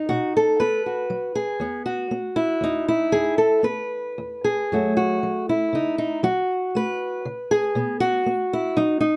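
Folk guitar in a peaceful, pastoral mood: an old ladder-braced acoustic guitar, fingerpicked, plays alone at 118 BPM in a rubato 3/4, in E major, tuned slightly low to A4 = 439 Hz, and spans E2 to B4. Its dark, woody, boxy tone, strung with old strings, sits up front under close, detailed microphones and light reverb as the chords move from B through E5 and F#m back to B. This 9.2-second excerpt is cut from a longer piece.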